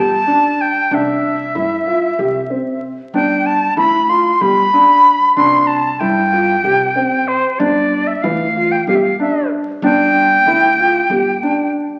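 Restless yet hopeful, this short excerpt of contemporary chamber music in 7/8 at 188 BPM in G mixolydian sets a bright, reedy jazz flute with airy vibrato carrying the melody over soft, felt-muted upright piano arpeggios and a woody, thumpy pizzicato upright bass, all heard through a wet recital hall reverb and the crackle of a very old 78 rpm record.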